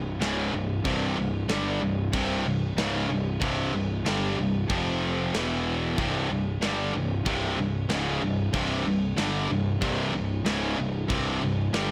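A high-gain distorted guitar sits up front with a bright, picked riff, backed by an overdriven electric guitar in the background and a double-tracked, very quiet tight distorted guitar, all three playing riffs across this epic, relentless heavy metal passage at 94 BPM in straight 4/4. A growly fuzz bass, picked and overdriven, churns beneath them, and a tight acoustic metal drum kit enters at 0.2 s with bright crash cymbals, a medium-tuned snare and a tight kick with soft clipping. The power chords move from C5 to F5 at 4.7 s, E5, then back to C5, all within a blown-out, overdriven studio sound.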